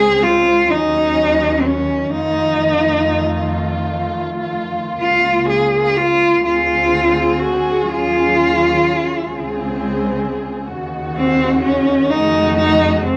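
A warm, bowed solo cello sings an expressive, heartbroken folk melody with vibrato and portamento, sounding distant yet up front, over dark, smooth-topped chamber strings holding sustained bowed chords from Dbmaj7 through Ebm7 to a closing F7b9b13, in a slow 6/8 at 42 BPM, with both parts carrying cassette-tape color and a moderate spring reverb in a small-room home recording that feels lifted from a longer reflective piece.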